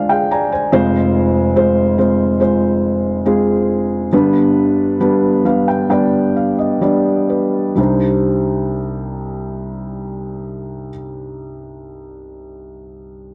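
Melancholic and heartbroken, this slow pop fragment in C minor moves at 62-72 BPM, carried by an intimate, felt-muted upright piano accompaniment with a mellow, vintage cassette tint, sitting up front and playing fills at the start and again from 5.0 s to 7.8 s as the tempo slows. A very quiet sawtooth analog pad with chorus adds soft sustained chords only through the first 0.7 s, and the harmony drifts from Ddim through Fm and G before settling on Cmadd9 at 7.8 s. Moderate spring reverb and studio ambience give the home cassette recording a close, hushed room feel.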